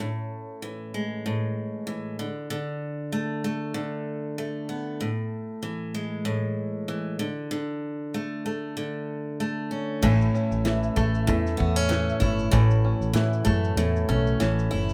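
A gently swung 4/4 groove at 96 BPM underpins this sunny, heartfelt acoustic pop excerpt, which opens with a woody, up-front picked steel-string acoustic guitar alone, alternating between A5 and D5 chords. At 10.0 s the music settles into A major as a foam-muted, round electric bass, a dark, smooth drum kit with punchy kick, snare, shaker and crash, plunky fingerpicked banjo arpeggios, and a distant, mellow French horn section holding sustained chords all join. A light reverb gives the ensemble a gentle sense of space until the cut at 14.9 s.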